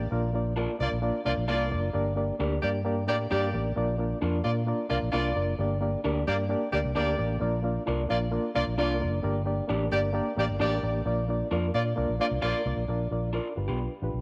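A straight 4/4 soul groove at 132 BPM in Bb major, this joyful, danceable excerpt from a longer piece sets a reedy electric piano with fast tremolo and a round, punchy, foam-muted fingered bass up front from the start, while a smooth-topped horn section with vibrato carries a loose second line from 0.8 seconds and a slightly broken-up, lo-fi guitar adds compressed stabs in the background, all in a moderate plate reverb as the harmony sways between Bb and Gm before turning to G7 at 13.6 seconds.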